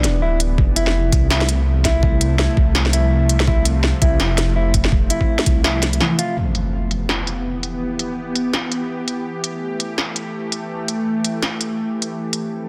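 Half-time drum and bass at 166 BPM in 4/4, with a swung sixteenth-note feel, sets a dark, spacious mood in E phrygian, moving between Em and F. An industrial drum kit of clanging snare and crisp, filtered hi-hats runs almost throughout, joined from 0.6 s to 5.5 s by a gritty, overdriven electronic kick with a thumpy, sampler-style character. A deep, rumbling detuned saw bass sits up front with a beating, saturated tone, while a mellow electric guitar plays clean, fingered arpeggios coated in 12-bit sampler grit and digital delay. The bass drops out at 6.0 s, and the guitar follows at 6.4 s, where an electronic impact hits and the second section begins. A tense, string-like drone, bright with vibrato and its own built-in reverb, sustains chords across the whole passage with sidechain pumping, all wrapped in light reverb and a dense, heavily limited modern master.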